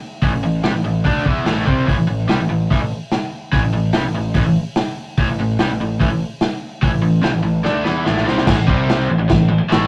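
Garage rock with a gritty, swaggering straight feel, this short cut pairs a double-tracked, overdriven electric guitar riff up front with a round, fuzzy picked bass and a muffled, lo-fi vintage drum kit of punchy kick and dark cymbals, all caught in a rough rehearsal-room sound with tube saturation, before a drum fill at 7.7 seconds leads into a brief power-chord section at 8.5 seconds.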